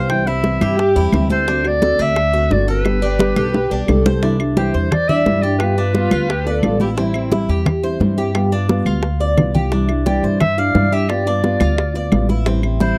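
A straight, relaxed four-beat groove in the Cuban son and guajira style drives this passage. Soft-handed congas sit in the background while hard-hit, low-tuned bongos and woody claves round out the percussion, broken by short drum fills. The pizzicato upright bass sits up front with a woody, steel-strung sound. A thumb-plucked nylon-string guitar gives full-bodied classical accompaniment, and the double-stringed Cuban tres adds metallic, picked arpeggios. Up front, a bright clarinet carries a jazz-flavored solo melody with vibrato and scooped notes in a roomy tone, falling silent at 6.8 seconds and returning at 10.1 seconds, while a dark, lush studio violin section bows a smooth second line through the first half. The dry, close recording has a 1970s studio character, and the harmony moves through plain major chords, sevenths and added-ninth colours for an easygoing, warm mood.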